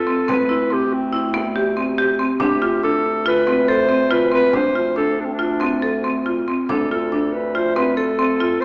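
Restless and pensive, this contemporary chamber piece moves at 141 BPM in an uneven 5/4 with a straight feel, set in D dorian and cut from a longer work. A breathy clarinet carries the melody up front, its subtone sound touched with light vibrato and a jazz-style phrasing, while a mellow bass clarinet holds a low D beneath it, breathy and soft in attack. A marimba struck with hard mallets spins bright, woody arpeggios from 0.1 seconds, sounding close, dry and full against the winds. Set further back, a small frame drum adds bright, hand-struck percussion from 0.3 seconds. The harmony shifts from Cmaj7(no3)/D to Dm7, and the whole ensemble sits in a wet recital-hall reverb with a small-speaker character.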